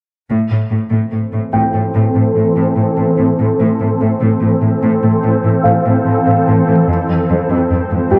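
Tense and relentless, this cinematic fragment from a longer piece builds throughout, opening with a lush, bowed cello section holding the bass from 0.3 seconds before a shimmering, ethereal pad of sustained chords arrives at 1.4 seconds, its chorus-thickened, detuned tone run through a filter sweep. A dark, boxy grand piano adds delayed texture in a higher register from 1.5 seconds, sitting lower in the mix. The harmony moves from A minor to F minor at 6.9 seconds, all within a wet recital-hall reverb and a dark production.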